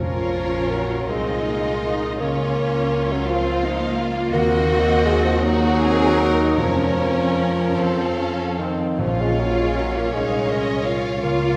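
A mellow, close-miked solo bassoon with light vibrato carries the accompaniment in this solemn, yearning classical excerpt in Bb minor, a rubato 6/8 at roughly 48-59 BPM. Two bowed violin sections share the melody and a second line, one with soft attack and portamento, over lush viola and cello sections, a focused double bass section and ringing fingerpicked harp arpeggios in the background. Very quiet timpani sound from 6.6 s to 10.1 s as the harmony moves through F back to Bb minor, and the ensemble is heard from further back in a wet concert hall.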